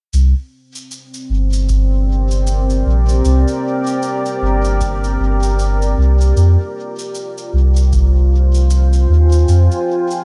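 A spacious, hazy ambient dub excerpt opens with a soft sub bass sitting up front, round and deep, beneath a light reverb that lends the whole short fragment an airy glow. Moving at 77 BPM in 4/4 with a swung sixteenth feel, the piece begins on a C5 chord and shifts to F minor at 6.4 seconds. A dark, moody pad enters at 1.1 seconds, sustaining detuned sawtooth chords thickened with a sub octave, wave-folding and ring modulation, softened by chorus and its own reverb into a mellow haze. A produced electronic shaker, re-recorded in a large room and trailed by dub echo, ticks quietly in the background throughout. A dry, tape-warm analog kick, kept very low in the mix, thuds from 1.7 to 8.1 seconds.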